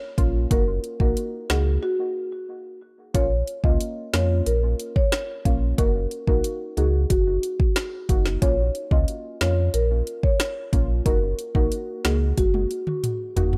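Bouncy and tough, this dancehall excerpt moves at 91 BPM in a straight 4/4, cycling between Bbm and Gb6 in a digital, echo-heavy space. An up-front electronic drum kit with a deep kick, woody snare, dark hats, rim clicks and toms drives it, with a break at 1.8 seconds and a fill closing from 12.4 seconds, while a full, sine-like sub bass with octave sits beside it and a soft, warbling, detuned chord stab with chorus and analog delay glows underneath. A rosewood marimba played with soft mallets carries the round, mellow melody from 0.5 to 12.8 seconds, its notes trailed by analog delay.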